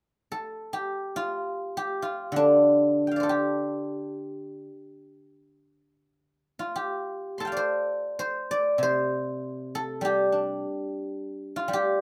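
Moving in free time, this short solo guzheng excerpt in the Chinese traditional style feels flowing and serene. The guzheng enters at 0.3 seconds and sounds up front, its fingerpicked strings ringing with a silvery tone across a range from C3 to C6. The playing shifts into a new section at 6.2 seconds, set in a moderate studio ambience with the rough quality of a home demo mix.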